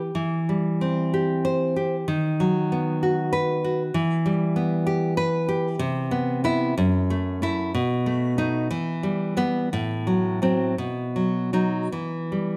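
A fingerpicked nylon-string guitar plays alone and up front throughout this passionate, intimate romantic piece in E minor, its bright, full-bodied tone carrying the sparkle of fresh strings and an audible finger squeak. Moving in a rubato 6/8 at roughly 49-66 beats per minute counted in dotted quarters, it travels through chords such as Cmaj7, F#m7 and B7 before settling on Em at 11.9 seconds. Light reverb and a dark production surround this short 12.6-second excerpt taken from a longer work.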